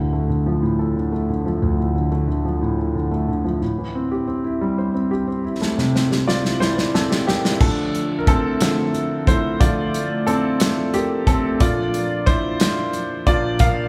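Set in a small room with light reverb, this dramatic, melancholic six-eight pop ballad excerpt opens on an intimate concert grand piano with audible action noise and deep bass, joined at 5.6 s by an up-front country drum kit with a tight kick playing a fill, before the piano takes a solo from 7.6 s over full-bodied picked steel-string acoustic guitar arpeggios in the background.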